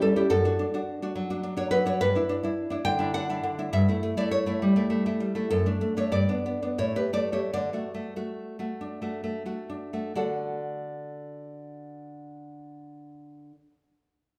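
A nylon-string guitar, fingerpicked in a classical manner, carries this romantic solo piece alone from the start until 13.5 seconds, sitting up front with a woody tone and the warm character of old strings. The mood is tender and warm, set in D major in 3/4, with a rubato feel that moves between 62 and 110 BPM and slows down from 4.6 to 10.1 seconds. The harmony passes through D/F#, Em7/G and A7/G before a closing turn of D/F#, G and A9 resolves onto D at 7.5 seconds, and a new section begins at 10.1 seconds. The guitar ranges from F#2 up to G5, and a wet recital hall reverb lends the sound the spacious bloom of a church or concert hall. This passage is cut from a longer piece.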